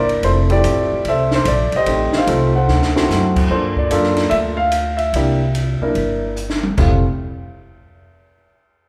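A baby grand piano, intimate and up front with audible action noise and long sustain, carries the melody over a woody, growly pizzicato upright bass in this sophisticated, warm jazz piano trio swinging at 147 BPM, while a compact cocktail drum kit with a high-tuned snare and punchy kick sits distant and roomy, adding fills at 2.7 and 6.4 seconds as the chords move from Fmaj7 through Am7b5 and D7 to Gm7 and C7 inside the wet reverb of a recital hall.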